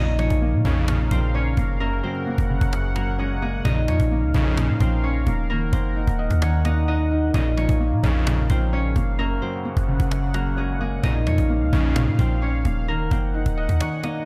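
A ringing, fingerpicked concert harp carries the melody from the opening over a felt-muted upright piano, a detuned sawtooth pad with chorus, bold polysynth stabs trailed by delay and a deep, boomy 808-style bass, with woody, hard-handed cajon arriving a moment later in this eerie, hard-hitting half-time trap piece in Bb minor at 130 BPM. The harp and the soft, intimate piano both sit behind a low-pass filter, the pad evolves through a slow-attack filter swell, the clean, sine-like bass sits up front, and the close, dry cajon plays in a small room as the chords cycle through Bbm, Gb and Ebm. The fat polysynth drops out at 12.1 seconds and the bass at 13.8 seconds, opening a brief break before the excerpt is cut.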